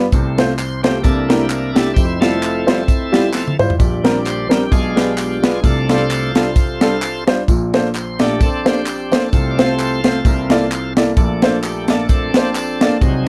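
A bright, shouting tonewheel organ leads this soulful, hopeful uptempo gospel excerpt, its lightly overdriven tone carrying key click and the slow churn of a rotary speaker as it solos throughout the clip. Underneath, a natural-sounding grand piano plays accompaniment up front, while a dry funk drum kit with a high-tuned snare and a tight kick drives the groove at 130 BPM in 4/4 with a light swing on the eighth notes. A short drum fill arrives at 3.3 seconds. Tambourine, egg shaker and group handclaps sit low in the mix with a small-room character. The harmony moves through rich gospel colors in F major, from F/C and C13 to Fmaj9, Bb69, Bdim7 and Bbmaj9, and the whole piece has the close, lightly reverberant feel of a 1970s-style studio recording cut from a longer performance.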